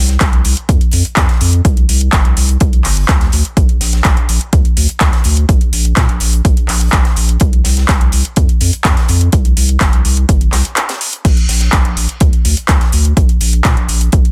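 Euphoric and uplifting, this progressive house excerpt moves at 125 BPM in a straight 4/4 in Bb major, cut from a longer piece. A punchy, overdriven electronic kick sits up front, joined by a deep, thick saturated sub bass with a triangle-like tone, fast attack and sustained notes running from G1 to Bb2, pumping against the sidechain. A layered deep house kit adds crash cymbal, handclaps and metallic hi-hats, all driven through overdrive, with the hats and cymbals also pumping. Tucked far beneath sits a very quiet acoustic fusion kit, whose airy, polished hi-hat and high-tuned snare carry a studio-room feel. The groove holds as a single section apart from a brief break from 10.8 to 11.2 seconds, all set in a small room ambience with a dense, heavily limited modern master.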